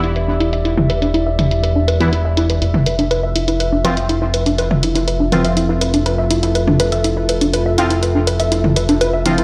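A tight, detuned sequenced synth drives this hypnotic, dark melodic techno fragment with echoing arpeggios under a filter sweep, over a fat, saturated analog bass up front, a deep, moody pad holding chords that move from Em7 to Fmaj7, a dry, punchy analog drum machine whose hats and toms are also filter-swept, a very quiet, damped 70s kit adding soft hi-hat and snare, and a bright, brassy synth stab entering at 2.0 seconds, all set in a lush hall ambience.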